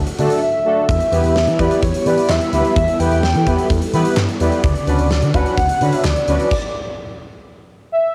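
Synth-pop at 128 BPM in E dorian, this driving, nocturnal fragment of a longer piece moves in a straight 4/4 over a chord sequence of D, Em and Bmadd9/D. A mellow, organ-like ensemble string pad sits in the background with sustained chords thickened by ensemble chorus and a cassette tape tint, while a smooth, gliding synth bass with portamento and vibrato anchors the low end. A huge arena drum kit with a fat snare, punchy kick, bright cymbals and handclaps drives the groove, its hall sound tinted by cassette tape. Bold, nasal analog synth brass adds sustained accompaniment with a filter sweep, and a velvety sawtooth-and-triangle lead carries the melody with chorus and vibrato. A brief silent gap falls between 0.4 and 0.9 seconds, and the parts play on until about 6.5 seconds, when the band stops and only the lead rings on to 8.1 seconds, all captured as a home cassette recording in a wet small room.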